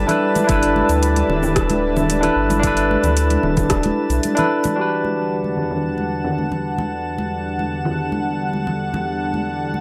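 A straight 4/4 groove at 112 BPM in E minor drives this wistful, smooth sunset chillout fragment: an overdriven deep house kit with metallic, filtered hats, rim click and shaker runs until 8.0 s, while a deep electronic kick stops at 3.8 s and a round analog bass drops out at 4.2 s, and bright, thin-skinned acoustic congas carry on to the end. Up front, a barky tine electric piano with vintage sampler grit and tape echo plays accompaniment over a lush, detuned unison pad with chorus, as the harmony moves from G6 to Em9. A faint glassy texture of drifting overtones hovers high above, and the whole passage carries a dry, gritty hardware character with transformer saturation.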